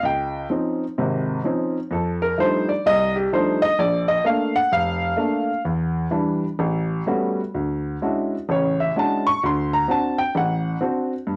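Solo jazz with a playful, relaxed feel at 128 BPM in swung 4/4 with rubato, tuned to A4 = 439 Hz, this short excerpt from a longer piece features a woody, slightly detuned upright piano that is intimate and up front, its action noise audible through cassette-tape colour and a wet studio reverb, as it ranges from F1 to C#6 across rich chords such as Dbmaj9, F13 and Dmaj9#11 in a home recording on cassette.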